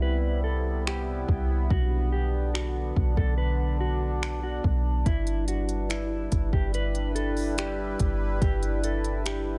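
A deep, round 808-style bass sits up front in this floating, blissful cloud-rap fragment at 143 BPM in a half-time feel, joined at 0.9 s by an overdriven R&B drum kit of soft kick, finger snaps and hi-hat, while an evolving sawtooth-and-triangle pad with chorus, phaser and sidechain pumping sustains Cmaj7, Bm and G6 chords beneath a dark, clean, fingered electric guitar melody shaded by harmonic tremolo, low-pass filtering and tape echo, in a dry mix.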